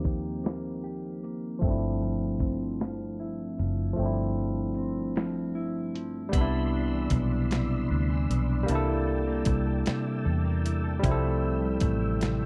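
Tender and warm, this slow R&B excerpt in six-eight unfolds over a dry, close 1970s-style studio sound with a low-pass filter dulling its top end. Up front, a gritty, compressed sampler-style soul kit supplies a thumpy kick and a medium-tuned snare with hi-hat, alongside a round, punchy, foam-muted electric bass and a barky tine electric piano, lightly overdriven through a combo amp. Beneath them, a dark, clean, fingered electric guitar carries a second line. A filter sweep colours the opening stretch, and the kick drops out from 4.0 s until the second section begins at 6.3 s. There a clear, percussive tonewheel organ enters with soft sustained chords, its third-harmonic percussion shimmering through chorus vibrato and a slow rotary speaker as the harmony moves from Cmaj9 through C13 to Fmaj9.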